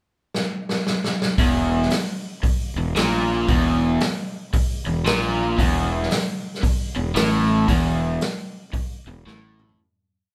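A drum fill opens this smoky, gritty blues rock piece with a southern rock edge at 0.3 seconds, the acoustic kit sounding saturated and up front, with a punchy kick, a medium-tuned snare, toms and hi-hat under a rolled-off top. At 1.4 seconds the band drops into a swung 4/4 groove, and a double-tracked, overdriven electric guitar picks a single-note riff low in its range with a bright tone. A fuzz-laden fingered bass doubles that riff in driving eighth notes, its growly, distorted sound sitting a little behind the guitar. The trio sounds as if it is playing live together in one small room, with moderate ambience that makes the sound close and raw. Another drum fill arrives near the end as the whole short piece fades out from 7.7 seconds.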